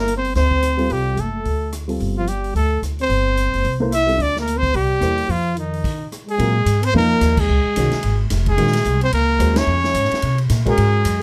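Lightly reverberant and close, this cool, spiritual modal jazz fragment swings, with a clear, up-front trumpet carrying the melody over a breathy, dark trombone second line, both colored by light vibrato. A woody, thumpy pizzicato upright bass with gut strings sits forward in the mix, while a mellow baby grand piano with audible action noise comps in short, intimate chords and a punchy big-room drum kit keeps the swing with ride, hi-hat, snare and rim clicks. The full band stops at 5.8 seconds before shifting into a new harmonic center at 6.4 seconds, then punctuates the passage with band accents at 7.3 and 9.5 seconds.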